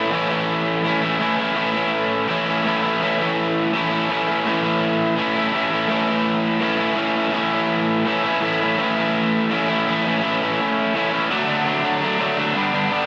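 A crunchy overdriven electric guitar carries this rowdy, swaggering rock excerpt entirely on its own, picked and double-tracked so it sits bright and up front. Spring reverb colors the guitar, and the whole recording has a light touch of room reverb around it. In straight 4/4, the part ranges from G2 up to E4, riding an A chord for the opening stretch before moving to D at 11.3 seconds and G at 12.6 seconds. The clip then breaks off at 13.1 seconds, cut from a longer piece.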